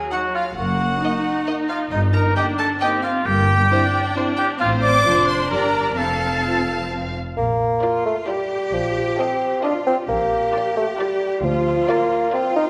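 A mellow, roomy cor anglais sings a second line up front in this mischievous, whimsical film cue in three, cut from a longer piece, while one violin section carries the melody, another traces a smooth counterline, and distant, vibrato-laden violas fill in beneath. French horns hold sustained chords in the background until about 7.1 s, and lush cellos and focused double basses anchor the bass. From 7.4 s a soft-attacked solo bassoon joins the accompaniment up front, the whole ensemble bathed in a generous scoring-stage reverb.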